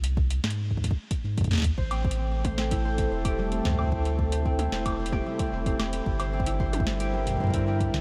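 IDM at 112 BPM in 4/4, this playful, intricate excerpt rests on a round, deep sine sub bass and an analog drum machine whose punchy snare, metallic hats, toms and woodblock are touched with delay, joined at 0.2 seconds by a produced electronic kick. A ringing, fingerpicked concert harp enters at 1.8 seconds with arpeggios through delay and shimmer reverb as the harmony moves from Ab to Am and later Gm6. From 2.3 seconds a warbling, nostalgic, lo-fi tape-like pad adds mellow sustained chords with chorus and shimmer, all within a dreamy mix soaked in a huge ambient reverb.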